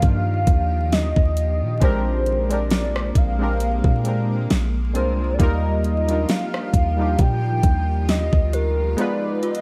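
An up-front electronic R&B drum kit drives this smooth, romantic contemporary R&B passage at 67 BPM in Eb major with a gentle 16th-note swing. Its knocking kick, fat snare, rim click and warm hi-hats sit beside a deep, boomy 808-style bass that drops out at 9.0 s for a brief break on an Abm6 chord. A velvety, detuned sawtooth lead with chorus and vibrato carries the melody over round, mellow analog keys treated with chorus and tremolo, while a cloudy granular pad holds blurred chords beneath, a faint ringing FM chime with ensemble chorus and analog delay glints in the background, and vinyl crackle runs through the fairly dry mix as the harmony moves from Ebmaj9 through Bb13 and Bb9.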